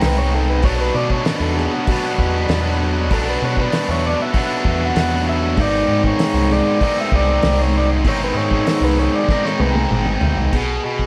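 Recorded live by a band in one room with moderate studio reverb, this is a hypnotic, mysterious psychedelic rock fragment. A bright, double-tracked overdriven guitar riff sits up front over a round, dark dub bass and a cloth-damped, thuddy drum kit with a fat snare and tight kick, while a reedy, overdriven vintage combo organ plays a solo melody. Beneath them, a very quiet pedal harmonium drone breathes under faint, lush sawtooth string-machine chords with a slow attack and ensemble chorus; the harmony moves between G# and Bm, and a drum fill enters at 9.3 seconds before the chords drop out at 10.5 seconds.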